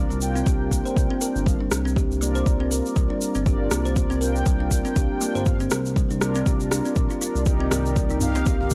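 A swung 4/4 groove at 120 BPM drives this warm, hypnotic afro house excerpt, with an overdriven, up-front electronic kick arriving at 0.5 s beneath a grainy egg shaker, a tape-warm electronic rim click and, near the end, a deep djembe with metal rattles sitting in the background. Woody, ringing kalimba arpeggios pass through a low-pass filter and tape echo, while round, detuned synth brass stabs with chorus and a dark, smooth synth bass share the sidechain pumping over a Bb chord. At 7.5 s a very quiet, mellow analog pad enters on Cm9, and the gritty cassette-tape recording sits in a small, dry room.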